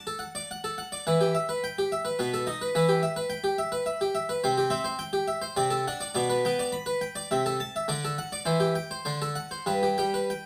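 A solo harpsichord leads this short, serene excerpt from a baroque-style suite movement, its plucked, brilliant tone sitting up front with the ringing depth of octave strings in a Flemish-style voice. The movement flows in 3/4 at 105 BPM with a rubato feel, the harpsichord ranging from G2 up to B5 across its 10.5 seconds. The harmony opens around D and E minor with a passing B7 before settling into G major from 4.4 s, moving through C, D7/C and G/B toward a cadence that lands on G at 9.7 s. A moderate stone room reverb lends the instrument a gentle halo, giving the classical phrase an unhurried, graceful air. Cut from a longer piece, it presents a single section of calm, flowing motion.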